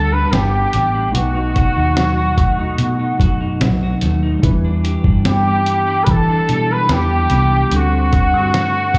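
A punchy, vintage-toned trumpet carries the melody up front with vibrato, ensemble chorus and tape echo over dark, clean picked electric guitar with subtle chorus, a worn, slightly out-of-tune tine electric piano lightly overdriven in the background, a round, foam-muted fingered bass, and a muffled, pitched-down sampler-style drum kit with a thumpy kick entering at 0.3 seconds, all moving through Gmaj7, B7, Em7 and D7sus4 in this dreamy, laid-back bedroom-pop excerpt that sounds like a live club gig heard through the venue's PA.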